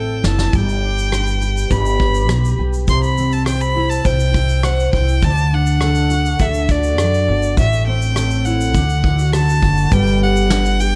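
An up-front pizzicato upright bass anchors this short acoustic pop excerpt, its woody, growly tone giving weight to a heartfelt yet carefree mood at 102 BPM in a straight 4/4 feel in G major. A soft brush drum kit opens with a quick fill and plays from 0.2 to 10.9 seconds, sounding distant and roomy with a fat snare, punchy kick, rim click and shaker. A double-tracked, fingerpicked steel-string acoustic guitar, full-bodied with a jumbo-bodied character, supplies the accompaniment throughout. Above it, a single bowed violin carries the melody with vibrato and a focused, slightly boxy sound. The harmony moves from Am through G, C and D before settling back on G near 9.9 seconds, where the piece shifts into a brief new section. A small room ambience and dark, warm production wrap the ensemble in an intimate setting.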